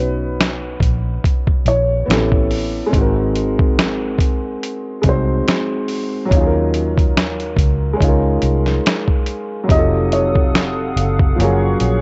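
A slow, lightly swung 71 BPM groove in 4/4 opens this cosy, dreamy lo-fi hip hop fragment, with a gritty, compressed sampler-style drum kit entering at 0.4 seconds up front, its thumpy kick, fat snare and hi-hat set over a dark, round, foam-muted fingered electric bass with tube saturation. A woody, boxy upright piano with audible action noise and long sustain carries the jazzy extended chords throughout, while a soft, mellow felt-muted upright piano touches in brief melody phrases through analog delay at the start and again at 9.7 seconds, when a hollow, flute-like detuned pad with chorus also comes in. The whole recording sits in light digital ambience and sounds worn and warbling, like old cassette tape with a drifting pitch and a dull, filtered top end.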